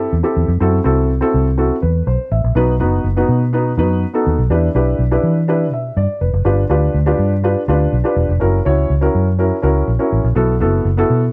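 A straight 4/4 pulse at 123 BPM drives this short, passionate cut of uptempo 1960s-style soul, where a dark, woody upright piano with audible action noise and a plate-reverb sheen comps through minor and dominant chords like Am7/E, F#m7b5, Em7 and G7 while a round, punchy, foam-muted electric bass sits up front beneath it, both playing from start to finish in a lightly reverberant room.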